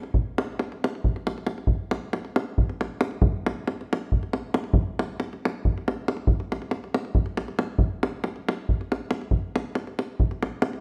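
A deep, acoustic davul sits close, dry and up front from the opening second, driving this fiery yet bittersweet Balkan folk fragment in a straight 7/8 through its roughly 10.8-second span, with a moderate recital-hall reverb around it.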